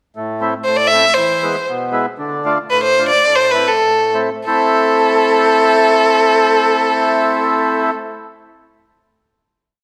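A reverberant recital hall surrounds this brief klezmer piece in A minor, with a lingering tail that gives both players an airy, spacious glow. The mellow accordion opens at 0.2 seconds with reedy, full triads on the off-beats in a straight 2/4, moving through A minor, E, D minor and back to A minor. A single bowed violin enters at 0.6 seconds and carries a modal melody laced with ornaments, its rich, focused tone marked by vibrato and a slightly boxy character. Both instruments sit up front, with the violin a little louder than its partner. The tempo ranges from 89 to 118 BPM and slows across the second half of the phrase before a held final chord from 4.5 seconds. The mood is festive yet bittersweet.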